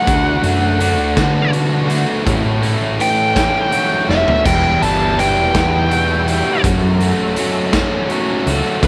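A slow 6/8 sway at 55 BPM, counted in dotted quarters with a straight feel, carries this bittersweet, moody stretch of indie rock cut from a longer piece. A bluesy lead guitar, dark and distorted, solos across the full 8.9 seconds in its upper register, riding over two biting overdriven rhythm guitars: one sits dark and in the background, the other warmer with a subtle chorus shimmer. A growling picked bass, overdriven, dark and round, joins with a raw garage drum kit whose punchy kick, medium-tuned snare, hi-hat, crash and toms sound saturated and gritty in a bright, pumping stone room with a rolled-off top. A drum fill from 4.1 to 4.5 seconds ushers in a very quiet tonewheel organ at 4.5 seconds, adding lightly overdriven sustained chords through a slow rotary speaker. The harmony moves from D6 to A6, then Emadd9 and F#m, all set in light, small-room reverb with the tuning pitched at A4 = 438 Hz.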